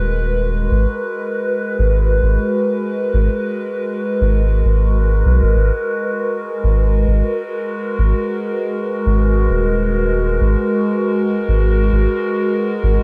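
Ambient dub at 99 BPM in G# minor, with a deep, hazy mood and a light 16th-note swing, drawn from a longer piece that rests on a single G#m9 chord throughout its 13 seconds. A warbling, lo-fi pad with a nostalgic, detuned character holds sustained chords through chorus, phaser and its own reverb, its slow attack and long release giving it a mellow drift. Beneath it, a soft, round dub sub bass sits up front, and the whole is bathed in a moderate spring reverb.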